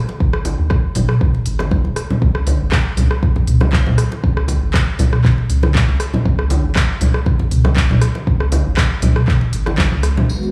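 A lightly swung afro house groove in 4/4 is built on a deep, layered electronic kick and a tape-tinged afro-pop kit of handclaps, smooth hi-hats, rim clicks and toms, both up front, with bright, low-tuned acoustic congas and a round, dark analog bass pumping against the kick from the start. The mood stays warm and earthy through this cut from a longer piece, and a drum fill lands at 10.0 seconds. At 10.3 seconds a smooth, detuned analog pad with chorus and sidechain pumping arrives alongside a jingly vintage tambourine, all heard as if played on a big sound system in a bare room with large studio reverb.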